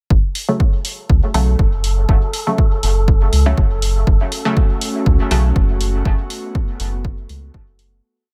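A hazy, hypnotic dub techno piece opens with a round, deep analog bass line and a punchy four-on-the-floor kick sitting up front. They are soon joined by open, tape-warm programmed hi-hats and sparse, muted chord stabs moved in parallel, coloured by chorus, phaser, dub echo and sidechain pumping. A dark, wind-like noise texture holds a high note in its own reverb from 1.5 seconds, and an airy, breathy pad enters at 4.3 seconds before the piece fades out from 5.4 seconds, all within an echo-heavy digital ambience.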